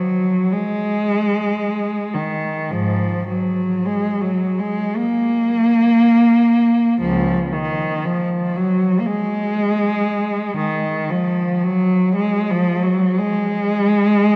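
A lone bowed cello opens at once, up front and rich-toned, singing a lyrical, nostalgic line in free rubato around 52-62 BPM, with vibrato, soft attacks and gliding portamento across a range from Db2 to Bb3. The single player's expressive phrasing hangs in a deep church reverb with a 3.4-second decay, and the whole passage carries the worn, warbling pitch drift of old cassette tape. This classical fragment runs 14.4 seconds, cut from a longer piece.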